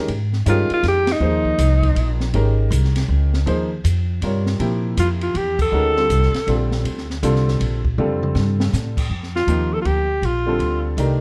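A vibrato-rich alto saxophone with scooped notes and a smooth top plays short phrases up front over a woody pizzicato upright bass, a clear, worn grand piano with short sustain and an open acoustic drum kit with dark cymbals, a high-tuned snare and a boomy kick, in a spiritual, hypnotic modal jazz excerpt in swung 3/4 with dry, warm production, band accents at 1.0 and 5.5 seconds and a drum fill at 8.0 seconds.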